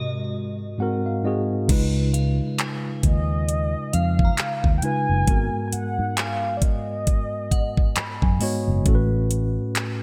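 This contemporary R&B excerpt, cut from a longer piece, moves at a slow 67 BPM in 4/4 with a swung sixteenth-note feel, and its mood is moody and longing. It opens on a G#7 chord with a short break, in which a mellow, clean tine electric piano plays a fill while a hollow, flute-like soft pad sustains chords in the background. A horn-like synth lead carries the melody with a soft attack, vibrato and chorus, its round sawtooth-and-sine tone shaped by a filter sweep, while a glassy, crystalline synth bell warbles behind it with chorus, phaser and digital delay. At 1.7 seconds the pad drops out, and a smooth, electronic R&B drum kit enters up front with a knocking kick, metallic hi-hat, handclaps and crash cymbal, joined by a dark, punchy fingered electric bass with a foam-muted sound. The harmony moves through C#9 and G#m7 before settling on A69 at 8.9 seconds, with the electric piano adding another fill near the close. 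The bright, 1980s-style digital production sits in light reverb and is tuned slightly low, to A4 = 435 Hz.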